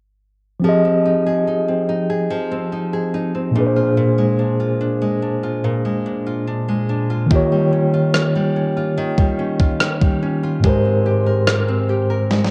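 A mellow tine electric piano and a full-bodied, fingerpicked nylon-string guitar open this late-night, longing contemporary R&B excerpt at 72 BPM in F dorian, the guitar's arpeggios carrying an analog delay over chords moving from Fm7 through Bb7 and Eb9 to Abmaj9, until a crisp 8-bit drum machine with a thumpy kick, rim click and overdriven snare enters at 7.3 seconds and plays a fill at 12.3 seconds, all of it bathed in spring reverb and cassette-tape grain with a faint mains hum from a home recording.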